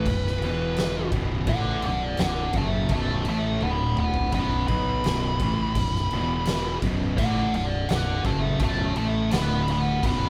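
Recorded as a band playing live in one room with light reverb, this heavy, sludgy stoner and doom metal passage in B minor moves at 84 BPM in a straight 4/4, with chords cycling through E5, Bm, D5 and B5. An up-front, compressed fuzz lead guitar with wah and distortion carries a solo melody over a crunchy, double-tracked overdriven guitar in the background, two very quiet thick fuzz guitars, one dark and one warm, and a growly, punchy fingered bass driven by overdrive and tube saturation. The oversized, low-tuned drum kit sounds gritty and saturated, with a boomy kick, fat snare, dark cymbals and a pumping big-room sound, and it plays a fill from 3.6 to 4.3 seconds.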